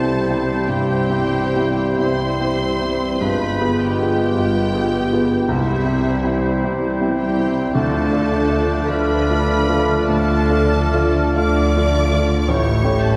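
Rubato in 4/4, this lyrical, lush romantic movement for piano and orchestra sets a polished grand piano and a rich, vibrato-laden violin section on the melody, while a pure, distant flute ensemble, a mellow cor anglais, a faint clarinet and a smooth second violin section carry second lines over a dark viola section and bassoon accompaniment, sustained chords from roomy French horns and a quiet trombone section, and a bass of cello and double bass sections, the whole heard from further back in a wet concert hall.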